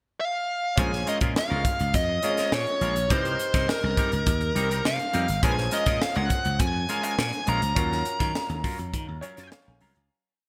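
Slick and bittersweet, this short, polished piece of 1980s jazz-funk pop opens with a dark, distorted lead guitar stating a bluesy, motif-based melody on its own from 0.2 seconds. At 0.8 seconds the band joins. An acoustic fusion drum kit with a high-tuned snare, tight kick and gated reverb plays a crisp sixteenth-note studio groove up front, while a growly, punchy slap bass carries an agile syncopated line. A bright, clean electric guitar picks a sixteenth-note rhythm riff with subtle chorus, and a clear grand piano sits in the background with rootless held chords, grace notes and short fills, colored by lush chorus. The harmony moves between minor seventh chords before settling on a ninth chord as the music fades from 7.8 seconds, with a piano fill closing the piece inside bright, 1980s-style digital production and light studio reverb.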